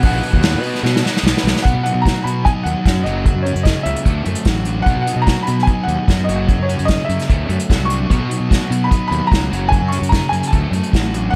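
Indie rock at 148 BPM in 4/4 with a straight, carefree and upbeat feel, this short cut from a longer piece moves through a chord cycle built on B, F#add9 and Dadd9. A bright, woody upright piano carries the melody between C#5 and C#6, its short-sustained notes trailed by tape echo, while a bell-like glockenspiel struck with soft plastic mallets rings a single F#6 in the background only until 1.2 seconds. Two picked, overdriven electric guitars drive the riff together, one dark and compressed, the other biting yet warm, sitting further back with ensemble chorus and tape echo. Underneath, a growly fuzz bass, fingered and overdriven, sits up front from F#1 to B2, and an acoustic drum kit played with bundle sticks gives a tight kick, a medium-tuned snare and hi-hat an airy, polished snap. A drum fill between 0.8 and 1.6 seconds leads out of the brief opening into the main section, and a small room reverb frames the whole band.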